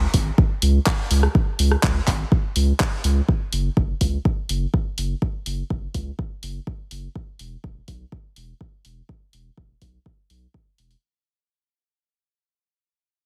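A dry, heavily compressed radio sound frames this driving, emotional progressive house fragment, where an up-front electronic kick with tape-warm depth and a layered drum kit of handclaps, hi-hat and rim click, both re-recorded in a small room, ride over a thick, saturated sine sub bass that pumps with sidechain, the whole passage fading out across its 11 seconds.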